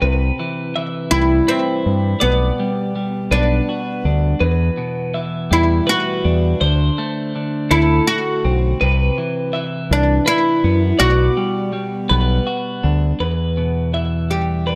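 Post-rock in 6/8, cathartic and melancholic, cut from a longer piece: two bright, twangy twelve-string electric guitars pick clean, compressed arpeggios in low and high registers, each touched with slapback echo, over a growling, overdriven fingered electric bass that sits round and up front. An oud enters at 1.1 seconds with a woody, plectrum-plucked melody on its double strings, also carrying slapback echo, as the harmony moves through Cmaj7, Gmaj7/B, Em7 and D7 before arriving on Em at 13.2 seconds. Light reverb and a digital ambience surround the whole.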